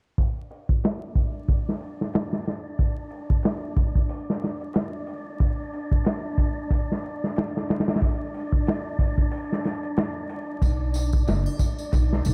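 A crunchy breakbeat drum kit leads this brooding, cinematic trip hop excerpt in B minor, entering at 0.2 seconds with a punchy kick, a medium-tuned snare and hi-hat, all sitting up front with a saturated, gritty character and a rolled-off top from low-pass filtering. The groove moves at 92 BPM in 4/4 with a swung sixteenth-note feel. From 1.0 seconds a wind-like tuned noise texture drifts in beneath the beat, airy and breathy, with a slow attack, long sustain and its own reverb. At 10.6 seconds a pizzicato upright bass arrives on a B minor chord, woody, growly and thumpy, sitting close and prominent in the mix. A soft layer of tambourine and triangle, compressed and acoustic, joins at the same moment. Vinyl crackle, light reverb and a small-room ambience give the whole recording a dusty, intimate atmosphere.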